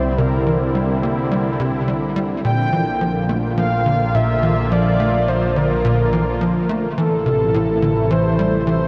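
Drenched in a huge ambient reverb with a 7.5-second decay and coloured by worn, warbling old cassette tape with drifting pitch, this short excerpt of sequencer-driven space music feels luminous and cosmic in a steady, straight 4/4. A tight, punchy sequencer bass riff enters at 0.2 seconds, its plucky sawtooth and square-wave tones driving forward through lush chorus, tape echo and a gritty vintage 12-bit sampler edge. Beneath it, a fat analog bass adds thick, saturated, detuned weight, while an evolving, airy pad sits up front with sweeping resonant chords, a noisy layer and chorus. Floating on top, a breathy, flute-like synth lead carries the melody with a gentle vibrato, trembling under tremolo and glistening through analog chorus, cassette tape colour, tape echo and shimmer reverb. The harmony moves from Cadd9 to Bb and then settles on Am.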